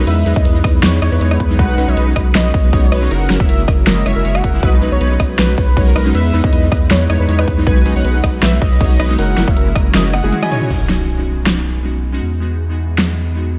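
Playful and euphoric, this future bass passage at 158 BPM in B major rides a half-time, lightly swung groove through a drop built on Emaj7, B6 and F#9, with a fat, detuned sawtooth polysynth riff, a bright, wave-folded unison pluck tracing arpeggios in the background, glassy, warbling digital keys with dub echo, and a velvety lead carrying the melody with vibrato, all pumping against a deep, saturated sub bass. An overdriven, punchy electronic kick and a big-room kit with a huge snare, hi-hats, rim clicks, crashes and toms drive the section to a drum fill at 10.1 seconds. At 10.7 seconds an electronic impact lands as the riff, pluck and lead drop away, and at 11 seconds a soft, breathy pad with phaser and 12-bit grit enters over the keys, bass and kit in a dark, lightly reverberant mix.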